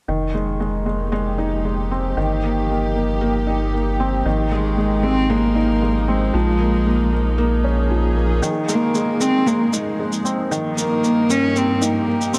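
From the start, a felt-muted upright piano carries this moving, cinematic piano and strings electronica excerpt in F minor at 115 BPM in a straight 4/4, playing a soft, mellow riff with audible action noise and a digital delay. Beneath it, a dark studio string section holds sustained, bowed chords played sul tasto with light vibrato and a low-pass filter. A round analog bass with a deep, sine-like tone anchors the low end, moving through Fm7, Cm7/G, Abmaj7 and Bbm7. At 4.5 seconds a solo cello enters up front with the melody, its airy bow, nasal and slightly boxy tone, and digital delay giving it a close, intimate presence. At 8.4 seconds the bass stops and a layered electronic shaker begins a build-up over a return to Fm7 and a rootless Cm7/G, all within a small room ambience, light reverb and a warm production.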